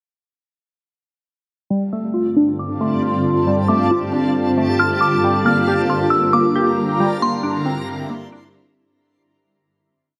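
Atmospheric cloud-rap with a hip hop pulse, this short, complete piece moves at 136 BPM in 4/4 with a half-time feel, its mood spacious and melancholic. It is built entirely as a breakdown. A glassy wavetable pluck enters first at 1.7 seconds, playing a patterned eighth-note arpeggio repeated like a sampled loop, its digital, warbling, vintage tone colored by ring modulation, chorus and tape echo under a filter sweep. A crystalline FM synth bell soon carries a sparse looping melody high in the register, bright and decaying through phaser and echo, while an up-front ambient pad of detuned, ethereal shimmer with an octave-up sheen holds sustained chords from 2.3 seconds. A reversed, swelling texture sits low in the mix as a dreamy granular wash, and the harmony drifts from F69 over G to Gm7 and then C9 over G before a fade-out closes the piece from 7.0 seconds, all set in light reverb.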